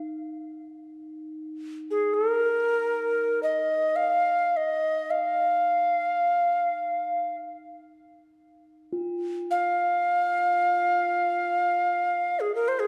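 A bright cedar flute in the Native American style carries the melody of this meditative, spacious world piece. Its straight, wooden tone has a crisp attack, an audible chiff and lifted highs, and it sits up front. The music moves in free time within F minor pentatonic, and the flute ranges from Ab4 to F5. A quartz singing bowl provides a quiet textural layer: a pure, ringing tone with slow beating, struck with a wooden striker and carrying a bright, airy quality. The bowl sounds briefly at the opening, the flute enters at 1.9 seconds, and the bowl returns at 8.9 seconds to sit beneath the melody until the end. A wet recital-hall reverb and a dark, warm production give this excerpt, cut from a longer piece, a meditative, spacious atmosphere.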